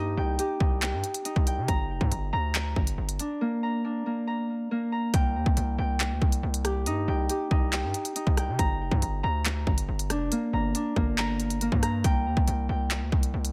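A Celtic harp and a distorted 808-style bass open this dark, menacing drill cut together, with the harp's thumb-plucked, ringing arpeggios passed through a low-pass filter and delay over a C minor progression that moves between Cm and Gm. At 0.4 seconds the drill drum kit arrives up front, an electronic, produced kit of hard-clipped kick, crisp hi-hats, handclaps and rim clicks with a tape-warm character, driving a half-time feel at 139 BPM in 4/4. The 808-style bass is heavy and aggressive, a sine tone with a noise layer, fast attack and decaying tail, saturated and distorted beneath the acoustic, warm harp. A digital ambience surrounds the parts, and the drums sit slightly louder than harp and bass. A new section begins at 5.1 seconds, returning to Cm and Gm before settling on a C5 chord at 12.0 seconds, as this fragment of a longer piece runs to 13.5 seconds.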